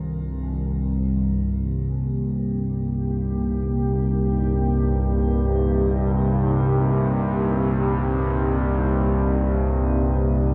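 A cavernous cathedral reverb with a long 6.4-second decay surrounds this short dark ambient drone excerpt, which moves in free time in C minor and leaves an ominous, echoing impression. Up front, an analog drone holds the low register from C2 to G2, its vintage sawtooth and pulse-wave tone warbling and evolving under chorus with a slow attack and long release. Beside it, a deep, full-bodied pad sustains a single C7sus4 chord across the whole 10.5 seconds, its detuned unison sawtooth and sine layers with a sub octave treated with chorus, its own reverb and a shimmer reverb. In the background, a gamelan-type bronze metallophone struck with a wooden mallet rings out smooth, metallic arpeggios on Eb3 through a diffuse ambient delay, then stops at 3.4 seconds. The pad and drone carry on together to the end of the fragment, keeping the mood dark and ominous.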